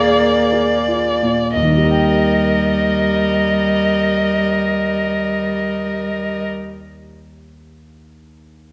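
A violin, viola, cello and concert grand piano sound together from the start in a tender, romantic classical movement for piano quartet, drawn from a longer piece, its flexible rubato pulse slowing down through the opening 1.6 seconds as a Bb7/Eb chord settles onto Eb. Up front, the dark, woody violin carries the melody with vibrato and sul tasto bowing, while the close, intimate cello sings a second line and the viola adds soft-attack accompaniment, both with airy sul tasto bows and light vibrato. The strings fall away by 6.5 seconds, leaving the piano, with its deep bass, to ring on alone until 8.7 seconds in a moderate recital hall reverb.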